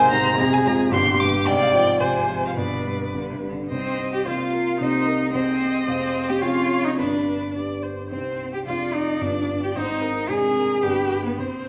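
Heard through a wet recital-hall reverb with a 1.4-second decay, this dramatic, stormy passage from a quick classical-period piano quartet movement at 109 BPM in 2/4, shaped with rubato, sets a distant, rich, smoothly bowed violin melody over a clear, focused cello second line up front, a dark, mellow baby grand piano accompaniment with long sustain, and an expressive viola with soft attack, vibrato and portamento, all moving from the opening phrase into a new section at 3.7 seconds.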